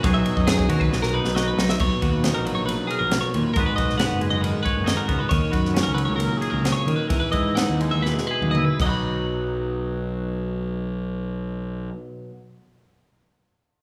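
Math rock and midwest emo in B major, bright and intricate at 116-137 BPM, where a twangy, up-front electric guitar with spring reverb and clean, compressed twelve-string arpeggios ride over a fuzz-overdriven picked bass and a crisp fusion drum kit with a high-tuned snare, punchy kick and dark cymbals, moving through Bmaj7, G#m7, D#m7 and Emaj7 in a moderate recital-hall reverb, with a drum fill at 0.9 s, a slowdown from 5.3 s, and the drums dropping out at 8.9 s.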